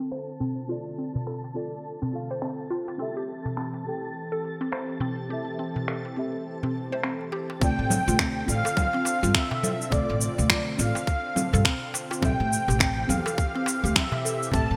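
Bright 1980s-style digital production with a lush hall reverb frames this hypnotic organic downtempo piece, cut from a longer work, at 104 BPM in D minor with a 16th-note swing: a dark detuned chord stab, a smooth analog pad, a round woody mallet-like pluck, a crisp close darbuka, up-front tape-warm electronic finger snaps with cabasa and congas, and a twinkling granular shimmer lasting until 7.6 seconds open over Dm7 and Am7 as filter sweeps move across the pluck and pad, before a breathy flute-like synth lead, a thumpy pizzicato upright bass and a tight electronic kick drum enter at 7.6 seconds.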